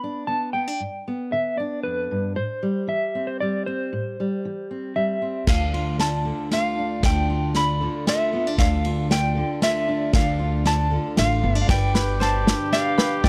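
A mellow, dark electric guitar with tremolo carries a yearning, bittersweet melody over a woody fingerpicked steel-string acoustic guitar in this dry, close, 1970s-style indie folk passage in 3/4 at 116 BPM, set in D dorian and moving from G to Am7. At 5.5 seconds the arrangement starts to build with a drum fill from an up-front acoustic kit with dark cymbals and a punchy kick, a thumpy pizzicato upright bass on gut strings, and a picked plugged-in steel-string acoustic guitar, as the harmony shifts to Dm. At 11.7 seconds, on a G chord, a warm classical-style trumpet adds a second line over very quiet sustained chords from a brass ensemble, while a light ukulele plays arpeggios in the background before the excerpt cuts off.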